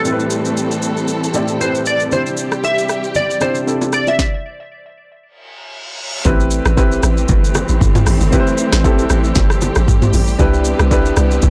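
Amapiano in A minor at 116 BPM with a 16th-note swing, soulful and hypnotic, cut from a longer piece and captured dry with a blown-out, overdriven sound. A glassy, detuned wavetable pluck with chorus and tape echo carries the melody over a natural baby grand piano, distant bowed strings with vibrato, and an up-front electronic drum kit with a deep kick and a sharp, softly clipped snare, while congas and bongos ring in the background from 2.1 seconds. After a stop marked by a reverse cymbal, the drop lands at 6.3 seconds with a hollow, bouncy log drum bass thickened by tube saturation, moving from Am7 to Cmaj7.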